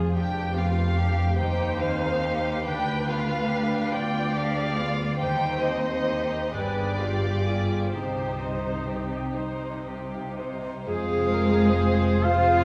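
Elegiac and melancholic, this slow, rubato classical excerpt in C minor and 6/8 sets a veiled, muted chamber string section (violins carrying the melody and a second line, close violas, distant cellos, and double basses) over ringing background harp arpeggios in a wet concert hall, before an airy flute group, clear oboe and mellow clarinet join on a second line with sustained horn chords at 10.9 seconds as the harmony turns to F minor.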